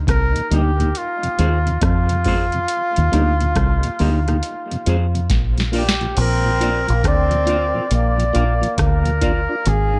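A sunny, laid-back roots reggae excerpt with a swung sixteenth-note feel, built on a deep, round, foam-muted fingered electric bass and a booming analog drum machine with a deep kick, crisp snare and metallic hats, both up front, while a drum fill at 5.3 seconds leads into the second section. A clear, punchy flugelhorn carries the melody through dub echo, set against a mellow tonewheel organ with slow rotary speaker and key click and a dark, clean electric guitar with tremolo, both sitting in the background. At 6.2 seconds a breathy, whispered trombone adds a distant second line with echo, all framed by light digital reverb over chords moving between Eb, Fm and Bb.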